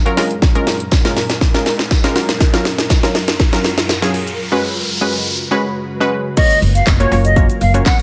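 Straight 4/4 house drums with a punchy kick and cracking snare drive this summery, euphoric dance-pop build-up, where a round, detuned analog pluck pumps over an ethereal, phaser-washed pad, a jingly tambourine sits distant and a riser hovers in the background, until the drop at 6.4 s brings a pure silver concert flute melody with vibrato and digital delay, joined at 6.6 s by a woody pizzicato upright bass, in a lightly reverberant space.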